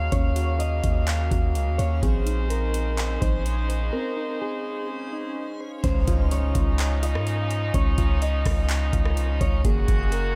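Muted, nasal French horns sustain chords over a deep, mellow 808-style bass, with soft, chorused electric-piano-like synth keys arpeggiating through digital delay and a reversed, granular swell sitting very quietly underneath, as a booming analog drum machine with metallic hats, handclaps and rim clicks sets a half-time cloud-rap pulse and a slightly broken-up electric guitar carries a compressed melody through harmonic tremolo and delay, the spacious, melancholic fragment turning at 5.8 seconds on a faint electronic impact that lasts until 7.7 seconds.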